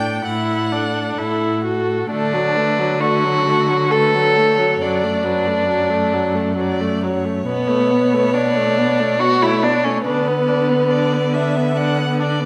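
The recording sits in a wet recital hall whose reverb lingers for about 1.5 seconds, softening every note of this slow, romantic string quartet movement in triple time. The mood is tender and lyrical, with uneven beats and a free, rubato pulse. All four players are muted with con sordino, giving the group a veiled, hushed colour. The first violin carries the melody in a dark, close tone with vibrato and soft attacks, yet sits lower in level than the second violin, whose light vibrato and up-front placement make its inner line unusually prominent before it stops at 12.1 seconds. The viola adds a warm accompaniment, and the cello anchors the bass with a smooth top and vibrato. Cut from a longer piece, the passage moves through a calm chord sequence that settles on B minor harmonies toward its close at 12.5 seconds.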